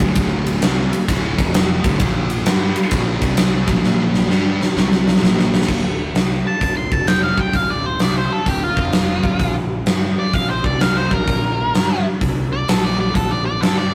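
A swung 129 BPM shuffle in 4/4 drives this heavy, brooding blues rock and southern rock excerpt in D minor, with a huge arena drum kit up front, its bright cymbals, fat snare and punchy kick ringing in a hall, and a drum fill from 3.8 to 5.7 seconds. A thick, double-tracked fuzz guitar riff sits in the background over power chords until 5.7 seconds, while a growly, overdriven fingered bass holds the low end throughout. From 6.5 seconds a dark octave-fuzz lead guitar takes a solo up front over shifting chords like Fadd9, Dm7 and Bbmaj7, all caught in a rough rehearsal-room sound with saturation and light reverb.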